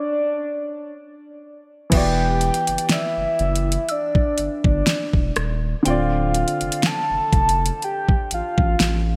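Late-night and moody, this contemporary R&B excerpt opens with a soft, octave-layered synth lead singing alone, its round, full-bodied triangle-and-sine tone thickened by a sub octave and colored by chorus, phaser, vibrato and digital delay. At 1.9 seconds the band arrives: a smooth, electronic R&B drum kit sits up front with a knocking kick, fat snare, metallic hi-hat, rim click and crash cymbal, the kit bathed in gated reverb over a lightly swung sixteenth-note feel. Beneath it, a saturated sub bass holds deep, thick, sustained notes, while a concert grand piano supplies intimate accompaniment, its audible action noise giving it a natural presence. A mallet-like FM synth pluck, woody and percussive with a short decay, adds chorus- and delay-treated texture in the background. The harmony moves from Em7 to Dm7 at 5.9 seconds, all set in light digital ambience with a bright 1980s-style digital production sheen.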